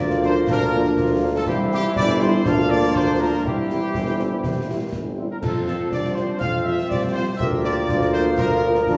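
A clear solo tuba anchors this spirited, proud military-style march for wind band, carrying the bass low in the range from G1 to F2 at 121 BPM in a straight 2/4. Above it, the trumpet section leads the melody with a soft attack and light vibrato, while a distant, roomy euphonium sings a second line. Airy flutes with lifted highs and a smooth-topped woodwind section add further second lines in the background, and a vintage-toned trombone section holds sustained chords beneath them. A very quiet French horn section fills in the accompaniment from 0.2 s, and concert snare, bass drum and bright clash cymbals join at 0.1 s. The harmony moves between Bb/D and C, touches F5 and returns to Bb/D, and the whole 9-second excerpt, cut from a longer piece, sits in a wet recital-hall reverb with small-room ambience and a warm, classical band sound.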